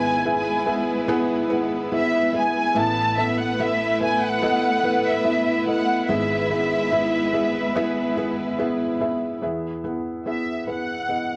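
Emotional and hopeful, this pop ballad fragment sets a lush, vibrato-rich bowed violin section melody up front beside a soft, felt-muted upright piano with audible action noise, both bathed in plate reverb, while a clear, focused studio string section holds sustained chords until 9.4 seconds and a picked steel-string acoustic guitar with finger squeak plays arpeggios in the background until 10.0 seconds, all four parts captured on cassette tape in a small-room home recording with moderate reverb.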